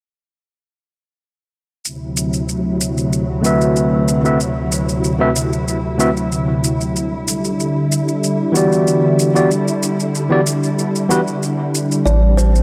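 A moderate, lush hall reverb surrounds this short clip of sunset chillout, a wistful, warm piece at 94 BPM in straight 4/4, tuned to A4 = 436 Hz. Silky string machine chords, vintage and mellow with a slow attack, long release and ensemble chorus, open at 1.8 seconds alongside a layered electronic shaker with overdrive. An overdriven tine electric piano, bright and gritty through a combo amp, joins at 3.4 seconds as up-front accompaniment, coloured by 12-bit sampler grit, tape echo and a filter sweep. The harmony moves from D13 to Em7 and then to Am11. At 12.1 seconds a woody, hollow kalimba adds brief, airy arpeggios with tape echo, while a round, deep sine sub bass holds a low A beneath it.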